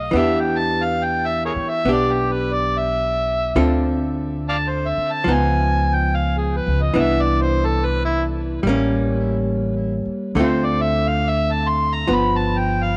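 Swung eighth notes in an unhurried 4/4 set a romantic, late-night jazz ballad feel across this 13-second excerpt from a longer piece. An amplified, overdriven harmonica carries the melody as a solo from the very start, its gritty tone shaded with light vibrato, scooped notes and tongue slaps, and it sits up front in the mix. A miked, amplified hollow-body archtop guitar accompanies throughout, with a dark, clean, picked and compressed sound that also sits up front. An upright bass plucked on steel strings anchors the low end with a woody, thumpy pizzicato, set a little lower in the balance. The harmony moves from Em7 through Dm7, Db9, Cmaj9 and A7b9 before returning to Dm7 and reaching G7, and a moderate plate reverb adds a soft glow around the group.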